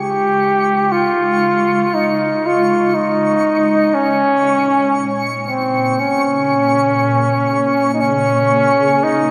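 Ambient music with a luminous, warm mood, heard here as a short piece cut from a longer work in a straight 4/4. A flugelhorn carries the melody up front as a solo voice, its warm, vintage tone touched with light vibrato and played in a classical style, with shimmer reverb and tape echo trailing behind it. Beneath it an ethereal, airy pad holds sustained chords, full-bodied and detuned, thickened by ensemble chorus and phaser, and it fades in across the whole passage, moving from Dbadd9 to Bbm7 at 3.9 seconds. High above, a twinkling granular texture adds a sparkling, bright glint with an octave-up shimmer, sitting lowest in the balance. The whole piece is bathed in a lush hall reverb with a 2.6-second decay, and the production leans dark and warm overall.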